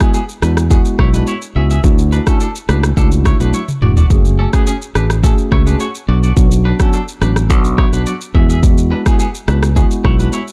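A sultry, smooth afrobeats groove, cut from a longer piece, opens with a produced electronic drum kit up front (deep kick, rim click, shaker and toms), a mellow tine electric piano in clean accompaniment, and a twangy, picked electric guitar riff, compressed and coloured by tremolo and tape echo. A growly, bright fingered bass enters at 0.4 s and sits up front beside the drums, and a drum fill arrives at 3.5 s as the harmony moves from Eadd9 and Dadd9 through F#madd9 and Bm. Digital ambience gives the whole production a dark, warm glow.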